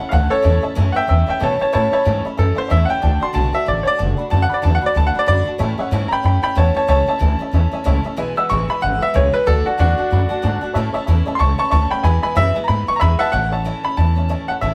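A brilliant, present upright piano takes the melody and a solo through the first 13.3 seconds of this retro, rollicking swung rock clip, backed by a detuned, jangly honky-tonk upright piano, a full-bodied picked steel-string acoustic guitar with audible finger squeak, and a thumpy, woody pizzicato upright bass sitting up front, all played live together in one room with light reverb.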